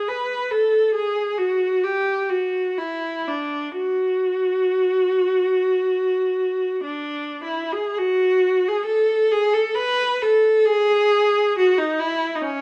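Mournful and lonely, this classical piece for unaccompanied viola unfolds freely and expressively, with a rubato feel over a loose 4/4. A single bowed viola carries the whole 12.6 seconds on its own, singing in its middle register with a rich, smooth tone and vibrato. The playing is even, and the instrument sits up front yet carries a distant quality, suspended in a moderate large-studio reverb. The dark production deepens the sense of solitude. This fragment of a longer work states its opening idea, then restates it from 8.0 seconds.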